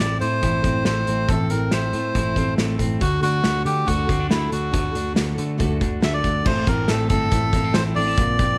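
Bathed in studio reverb, this short, wistful and bittersweet cut of jangly indie pop at 139 BPM puts a reedy, breathy melodica with tape echo up front over a full-bodied fingerpicked jumbo acoustic guitar, slightly broken-up compressed electric guitar arpeggios, a round, punchy foam-muted bass, and a loose drum kit with a tight kick and dark cymbals in a pumping small room, moving from Am to D and back to Am at 6.5 seconds.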